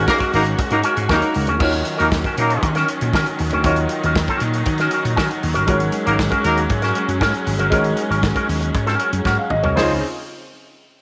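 A mellow horn section with octave doubling and slapback echo punches out stabs over a joyful, glamorous disco groove at 118 BPM, while a growly, punchy slap bass drives the low end. A clean, compressed electric guitar through an envelope filter and spring reverb, a polished grand piano set in the background, and a lush, bright string section holding sustained chords fill out the harmony, which moves from Ab9sus4 to Ebm7, returns to Ab9sus4, and lands on Dbmaj9. A distant, roomy soul drum kit with dark cymbals and a tight kick anchors the groove, which opens with a band accent and closes with a drum fill at 9.3 seconds in this excerpt from a longer piece.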